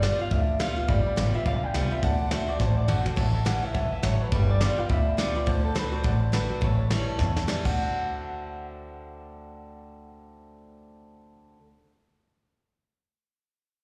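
Rockabilly at a rollicking, upbeat 209 BPM with a swung feel in D mixolydian, cut from a longer piece and heard as a live gig through the venue's PA with recital-hall reverb. A twangy, slightly broken-up electric guitar carries the melody through a small old amp with spring reverb, slapback and tape echo, while a boxy parlour steel-string acoustic with finger squeak picks out accompaniment and a woody, thumpy pizzicato upright bass on gut strings sits up front. A soft brush drum kit with punchy kick plays fills at 2.6 and 7.2 seconds before dropping out at 7.7 seconds, and a brilliant upright piano enters at 0.9 seconds in the background as the chords cycle through G7, D7 and A7.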